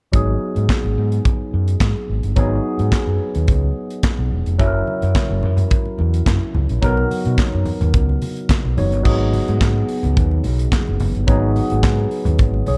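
A dark studio sound frames this driving, danceable disco cut in G# minor at 108 BPM, moving through G#m7, F#7 and Bmaj7 before returning to G#m7 at 9.1 s. Up front, a polished, airy acoustic kit with a punchy kick, medium-tuned snare, hi-hat, handclaps and crash sits beside an amped, overdriven fingered electric bass, while a bright, barky tine electric piano, lightly driven through a combo amp with a phaser, carries the accompaniment. Low-tuned congas with a thick skin enter very quietly at 4.6 s.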